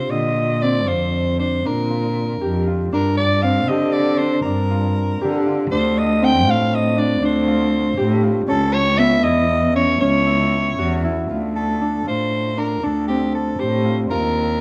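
Restless and hypnotic, this contemporary chamber piece, cut from a longer work, moves in an uneven 11/8 at 236 BPM counted in eighths, with a straight feel and tuning set slightly high at A4 = 441 Hz. A raspy, gritty soprano saxophone carries the melody up front between G4 and G5, its pop-style vibrato giving the solo line an edge. Beneath it, a warm Celtic harp rings out thumb-plucked arpeggios in the middle register, while a single dark cello holds the bass with a soft attack and an airy, sul tasto bow that sounds close and intimate. The harmony drifts from Bbadd9 through Gm and Dm7 to C#m11, then a new section arrives at 11.3 s, returning to Dm7 before settling on Ebmaj7 at 14.1 s. All three parts play throughout, framed by a moderate recital hall reverb.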